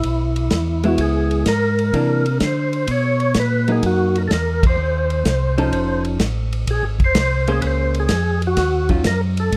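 Late-night and bluesy, this soul jazz organ trio excerpt swings in 4/4 with a fat, lightly overdriven percussive tonewheel organ carrying the melody through slow rotary speaker and chorus vibrato, a round, mellow tonewheel organ holding down the bass, a dry, dark soul drum kit with a tight kick on hi-hat, ride, and snare, and a clean, picked hollow-body jazz guitar comping from 0.8 to 9.0 seconds over shifting jazzy chords, all in light reverb with a band accent at 4.5 seconds.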